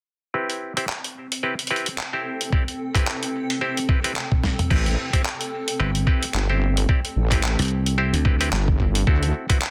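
Swaggering and playful, this glitch hop excerpt struts along in 4/4 with a light swing on the sixteenths. A bright, twangy clav opens with hollow, nasal stabs at 0.3 seconds, running through a low-pass filter sweep, digital delay and sidechain pumping. A cloudy granular pad soon drifts in alongside it, blurred and evolving with its own built-in reverb. The boom bap sampler-style kit brings gritty, pitched-down crash, handclaps, hi-hat, toms and a medium-tuned snare with soft clipping, and an up-front, thumpy electronic kick joins at 2.5 seconds. After a drum fill, the second section arrives at 4.7 seconds with a heavy, detuned wobble bass thickened by chorus, soon joined by a growly, foam-muted thumbed slap bass carrying tube saturation. The harmony rests on Am7 before turning to D7 near the end, all set in light digital ambience under a dense, heavily limited master.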